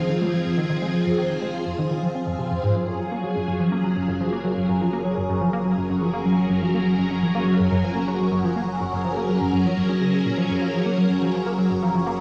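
A phased string machine opens this cosmic, mysterious ambient piece at 124 BPM in 4/4. Its swirling, vintage, bright sustained chords sit up front, shaped by a slow attack, a long release, ensemble chorus, phaser and cassette tape. From the first moment, a tight sequenced synth drives a riff that blends detuned sawtooth and triangle tones with a filter pluck and fast attack, turned mellow by chorus, phaser, cassette tape and tape echo. A deep, round sine sub bass holds down the low end in the background for the whole passage. The harmony moves from Fm7 to Gbmaj7 at 2.8 s over a straight feel, while moderate spring reverb and studio ambience frame this home cassette recording, cut from a longer piece.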